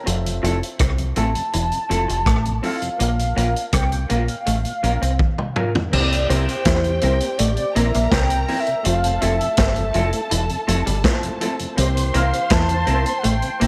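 Tender and romantic, this lovers rock reggae excerpt moves at 82 BPM in F major. A velvety, detuned synth lead carries the melody over a round, foam-muted dub bass and a punchy vintage drum kit with dark cymbals and slapback echo. A slightly broken-up, lo-fi electric guitar riff has its own slapback, while a second, dark guitar plays background stabs through subtle chorus. An intimate grand piano with audible action noise and a very quiet organ on slow rotary fill out the accompaniment. A drum fill at 5.2 seconds leads into a lush, bowed string section that enters at 5.9 seconds with a second line.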